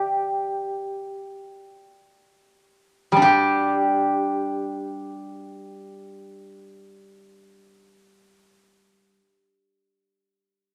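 In free time, this short passage of Chinese traditional music unfolds at a rubato pace, easing back and slowing down across its opening 3.2 seconds. A single acoustic steel-string zither carries the whole passage as a solo, played with fingerpicks and moving between G3 and D5. Its tone is silvery and ringing, with a warm body, and it sits up front in the mix. The playing falls into two brief sections, the second beginning around 3.2 seconds and running to about 7.3 seconds, before the zither's last notes finish at 9.2 seconds. Moderate studio reverb lends a gentle sense of space, and the mood stays pastoral and elegant throughout this fragment of a longer piece.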